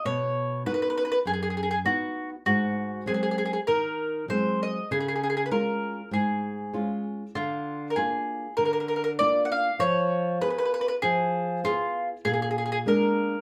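A picked mandolin with a round, double-string tone opens this sunny, lively Italian folk serenade, carrying the melody up front at 98 BPM in 4/4 with a light swing. A fingerpicked flamenco guitar, boxy and warm with fresh strings, joins at 0.1 s to accompany it through a chord path that moves from B through Ab7, Db and Fdim to Bb7. Both acoustic instruments sound as if played live together in one studio room with a short, wet reverb, in this snippet cut from a longer piece.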